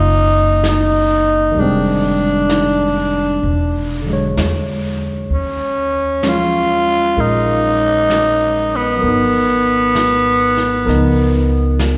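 A growling, breathy tenor saxophone carries the melody up front from the start, over a barky, lightly overdriven tine electric piano and a woody, thumpy pizzicato upright bass. A muffled vintage brush kit joins at 0.6 seconds with brushed snare and hi-hat in this intimate, tender jazz ballad, which swings gently at 64 BPM through lush extended chords. The saxophone's scooped, raspy notes ring out in the long reverb of a concert hall, and the excerpt is cut from a longer piece.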